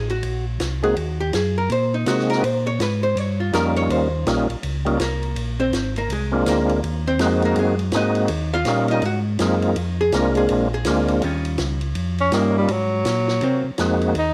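A swung 164 BPM groove in 4/4 drives this bluesy, soulful soul jazz organ trio excerpt: a small acoustic cocktail kit with dark cymbals and a high-tuned snare keeps time on hi-hat, ride and snare, while a mellow, round tonewheel organ with key click and slow rotary speaker carries the bass. A dark, compressed, picked hollow-body archtop guitar solos over Ab9, Eb9 and Bb9 chords for the first 11.2 seconds, and a full, lightly overdriven percussive organ with chorus vibrato plays the melody up front. At 12.2 seconds a smooth-topped tenor saxophone with light vibrato enters for its solo, all set in a small room with moderate plate reverb.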